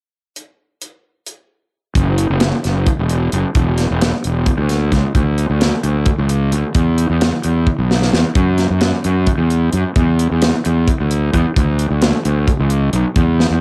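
A dry, intimate home cassette recording opens this playful, wistful fragment of math rock and midwest emo in a straight 7/8 at 263 BPM, where a crisp, airy, polished fusion drum kit with a tight kick, medium-tuned snare and hi-hat starts alone at 0.4 seconds, a growly, overdriven fuzz bass joins up front at 2.0 seconds, and a drum fill at 7.7 seconds breaks up the bass-and-drums groove.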